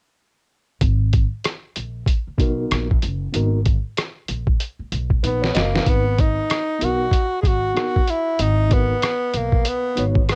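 This cool, mellow jazz-hop cut opens at 0.8 s with a lo-fi, sampler-style drum kit and a pizzicato upright bass, moving at 95 BPM in 4/4 with a swung sixteenth-note feel in G# minor over a G#m9 chord. The drums sit up front, compressed, pitched down and muffled, with a thumpy kick, a medium-tuned snare, rim clicks and hi-hat carrying a tape-softened cassette grain. The woody, acoustic bass with steel strings is also close and prominent, holding a low register. At 2.4 s a clean, mellow tine electric piano enters as gentle accompaniment, heard through its built-in speakers and set lower in the mix. During a drum fill, a breathy tenor saxophone takes the solo melody from 5.3 s, close-miked with a soft attack, light vibrato, cassette coloring and analog delay, all in a dry, home-recorded cassette sound.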